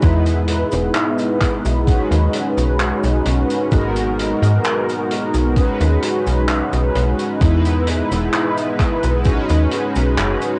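A mellow synth brass sits up front in this woozy, dreamy vaporwave fragment. Its round, dark sawtooth-and-square tone is detuned and thickened by a sub octave, with a filter sweep, vibrato and a cassette-tape haze of analog chorus and delay. It sustains lush chords that drift from Emaj7 to B69 and G#m9 and back across the full 10.6 seconds. Beneath it, a slap-like FM bass gives snappy, metallic, digital plucks with a fast attack that then decay, and it also sits prominently forward. A thumpy, sampler-style electronic kick, tape-warmed and re-recorded in a small room, carries the straight, slow pulse until it drops out at 9.4 seconds. A quieter vintage kit of cabasa, handclaps and hi-hat adds gritty, saturated, mid-forward texture with a rolled-off top, roughened by 12-bit sampler grain. The whole piece sits in light reverb with the lo-fi feel of a home cassette recording.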